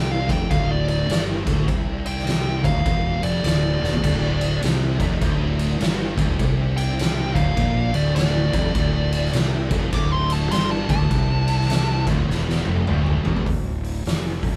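A distorted lead guitar solo opens this ominous, hypnotic stoner and doom metal excerpt, over a pair of dark, picked fuzz guitars grinding out a low riff in the background and a fingered electric bass with overdriven fuzz and a warm, direct-and-amped tone. An oversized, low-tuned acoustic drum kit joins at 0.3 seconds, up front in a bright stone room, with a fat snare, a boomy kick and dark cymbals across hi-hat, ride, crash and toms. The swung groove rolls along at 102 BPM, and the drums break into fills along the way. A tight, double-tracked guitar with a keen, distorted edge adds its riff from 4.0 seconds, sitting back in the mix. The compressed fuzz lead carries its melody high above the low riffs until 12.1 seconds, and a final drum fill leads into a brief closing section, all captured as a band playing live in one room with light reverb.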